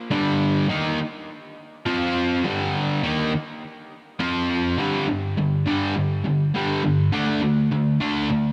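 A home cassette recording with light reverb carries a brief, driving and menacing rock excerpt in G minor at 102 BPM, where a lone cranked stack guitar, bright, picked, double-tracked and up front with overdrive, tape colour and analog delay, ranges from G2 to F4 over Gm and F5 chords before shifting to G5 and D5 at 4.8 seconds and continuing until 8.5 seconds.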